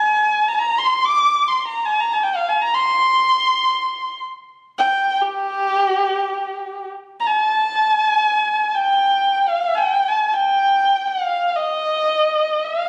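A single bowed kamancheh carries this Persian modal piece on its own, its dark voice sitting up front with soft attacks, vibrato and gliding portamento. One player moves in free time through dastgah shur on G, tuned to A4 = 441 Hz, ranging from G4 up to D6 with a smooth top register. The mood is longing and soulful, and the playing is expressive throughout. The 12.9-second passage is cut from a longer piece and presents the same material twice, with the second statement beginning at 7.0 seconds. A light reverb and studio ambience surround the instrument, captured on a phone in the room.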